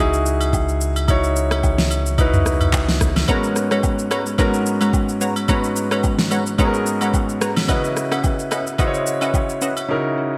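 A lightly swung 4/4 amapiano groove rides on an up-front electronic drum kit with soft kick, fat snare, handclaps, rim clicks, shaker and toms, while agogo bells and woodblock sit close and dry in the background. An intimate concert grand piano with audible action noise accompanies from the start, a deep sine-and-triangle sub bass with octave sounds until 3.2 seconds, and a punchy, detuned sawtooth chord stab with chorus and delay enters at 3.3 seconds. The mood is deep and late-night, set in a bright 1980s-style digital production with moderate plate reverb, and the drums fall silent at 9.9 seconds near the close of this excerpt.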